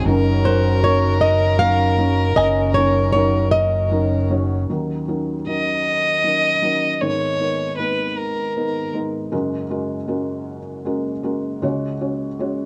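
Through a worn, warbling cassette sound in a small room, this intimate, reflective acoustic folk-pop ballad in Eb minor moves at 52 BPM in a slow 6/8, with a boxy, bright fingerpicked flamenco guitar carrying the melody up front over a round, punchy electric bass, a soft thick-felt upright piano, a faint reedy hand-pumped harmonium and a twangy clean electric guitar with tremolo arpeggiating in the background, before the bass, harmonium and electric guitar drop out by 4.6 s and the biting yet smooth-topped bowed violin takes a solo from 4.7 s as the chords drift from Ebm7 through Abmadd9 and Gbadd9 to Dbsus4 in this excerpt.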